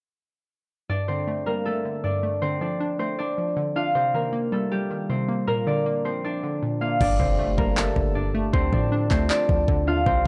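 This trap cut has a dry, gritty hardware sound set in a digital ambience, pairing a hard-hitting edge with a melancholic mood in G minor at 157 BPM, felt in half-time. From 0.9 seconds, an up-front acoustic concert harp carries the fingerpicked, ringing melody, softened by a low-pass filter. Beneath it, a crystalline wavetable pluck with chorus and a filter sweep plays glassy, fast-decaying accompaniment over chords moving from Gsus2 through Dm and Cm7 to Bb. At 7.0 seconds the beat lands with a very quiet electronic impact: a tape-warm trap kit with a knocking kick, handclaps and crash cymbal, hi-hats muted, over a deep, boomy 808-style sine bass with a noise layer sitting in the background. Shortly after, at 7.4 seconds, a dark, detuned lo-fi pad drifts in behind everything with warbling chorus, a slow attack and a long, nostalgic release in its built-in reverb.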